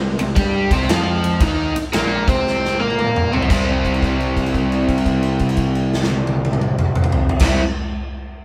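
Swung eighths at 115 BPM in 4/4 drive this gritty, brooding piece of blues rock and southern rock, played by a power trio live in one room with light reverb. A double-tracked, overdriven electric guitar riff sits up front from the start, backed by a growly fuzz bass in the background and a big acoustic drum kit with bright cymbals, a tight kick and a medium-tuned snare. A drum fill arrives at 2.5 s before the harmony turns from C minor to C major at 3.5 s, where a held note rings until 7.3 s in this excerpt.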